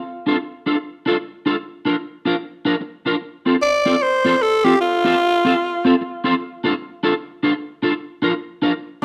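Bouncy and upbeat, this short ska excerpt moves at 151 BPM in 4/4 with a swung eighth-note feel, set in F major. A clean electric guitar, dark in tone and picked up front, carries the accompaniment from 0.3 to 9.0 seconds, colored by an ensemble chorus and analog delay. A growling tenor saxophone takes the solo melody between 3.6 and 6.0 seconds, returning briefly at 9.0 seconds, its raspy, gritty sound close-miked and bright with vibrato and a touch of analog delay. The harmony circles through Dm, Bb and F, returning to Dm and Bb near the end. The production sits in moderate studio reverb with a dark, warm character that keeps both instruments present and forward.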